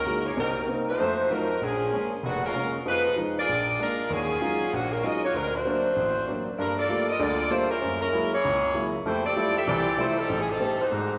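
Jazz at a brisk 194 BPM with a swung 4/4 feel, this brassy, dramatic excerpt pairs a mellow saxophone section carrying the melody with a baby grand piano in accompaniment, both playing throughout its roughly 11 seconds. The saxophones sound tight and up front yet roomy, with a light vibrato, while the piano comes across as natural and close. A long, wet reverb of a church or concert hall surrounds the ensemble as the chords move through rich altered and extended harmonies such as F7b9, Ebm11 and Fmaj9.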